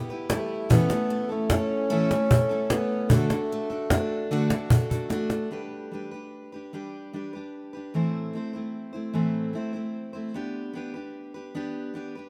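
In a slow, straight 6/8 at 50 BPM in G major, this gentle, nostalgic acoustic folk fragment sets a mellow, classical-style bassoon melody over a bright, full-bodied jumbo steel-string guitar with audible finger squeak, a shimmering, octave-doubled twelve-string that drops away at 5.6 seconds, and a snappy, saturated cajon whose fill closes the first section. The steel-string guitar moves from Em through A and D, then carries on alone through G, Am and G/B, all in a rough home-demo mix with light reverb.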